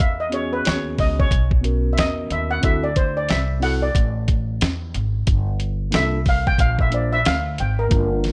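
Smoky and nocturnal, this short jazz-hop cut from a longer hip hop piece rides a swung sixteenth-note groove in 4/4. A gritty, sampler-style boom bap kit sits up front, its compressed, pitched-down sound carrying a thumpy kick, a medium-tuned snare and hi-hat with vintage 12-bit sampler crunch. Beneath it, a woody upright bass with steel strings plays pizzicato, close and present. From 0.3 seconds a mellow tine electric piano adds clean, direct accompaniment beneath the other parts. Over the top, a shimmering, metallic steel pan struck with medium rubber sticks takes an airy solo lead throughout, moving through E6, D7 and Gm7 changes in a studio reverb.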